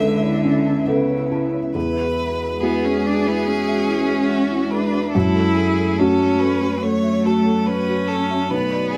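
In a rubato 4/4 at 71 BPM, this hopeful, intimate neoclassical fragment sets a felt-muted upright piano, mellow and boxy with audible action noise, beside a rich cello that sings a second line up front with vibrato and portamento. A clear, focused violin carries the melody from a more distant place, while an ethereal pad with ensemble chorus and built-in reverb sustains the chords and a woody marimba with soft mallets plays arpeggios in the background. The players perform live in one room under moderate studio reverb, moving from Aadd9/C# to Eadd9 at 1.7 seconds and on to F#m7 at 5.1 seconds.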